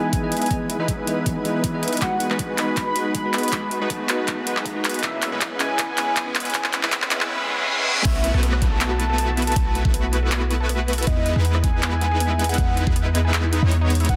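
Future bass at 159 BPM in a half-time feel, bittersweet and dreamy, this excerpt opens with a velvety, chorused synth lead carrying the melody over a bold, detuned sawtooth polysynth riff, bell-like tine electric piano and a faint shimmering pad, all moving through Emaj7, G#m7 and C#m7 as a filter-swept build-up, drum fill and very quiet risers gather toward a reverse cymbal. The piano and pad fall away at 7.3 s, and at 8.1 s the drop arrives as a boomy, up-front 808-style bass and lush detuned unison pluck arpeggios join the pumping polysynth and lead over B7sus4 back to Emaj7. A knocking electronic kick and a trap kit of metallic hi-hats, handclaps, rim clicks and crash drive it all, under light reverb and a dense, heavily limited modern master.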